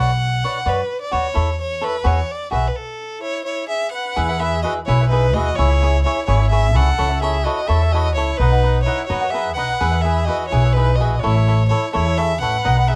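A dark, lightly reverberant production frames this short mariachi-flavored Mexican folk excerpt in a straight 6/8, proud and festive in mood. A focused, vibrato-rich bowed violin carries the melody up front over crisp picked cavaquinho and a woody pizzicato upright bass that sits prominently beneath, with everything halting in a brief stop at 2.7 seconds. At 3.2 seconds a distant, roomy trumpet enters in the background with a classical-style second line as the music moves into its second section at 4.2 seconds.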